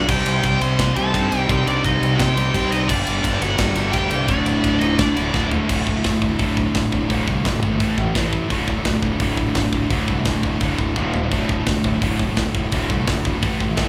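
Epic and aggressive, this heavy metal excerpt at 171 BPM in D phrygian dominant opens in half time, with a high-gain lead guitar carrying the melody over a very quiet, dark smooth lead guitar's second line until 5.5 seconds, while a double-tracked, compressed fuzz guitar drives the riff up front beside a faint heavy high-gain guitar and a scooped high-gain guitar in the background, an overdriven fingered electric bass growls beneath, and a tight metal drum kit with bright cymbals and a tight kick sits up front, its fills at 5.3 and 11.0 seconds pushing the band onward, the whole band playing live in one room inside a wet, large studio reverb.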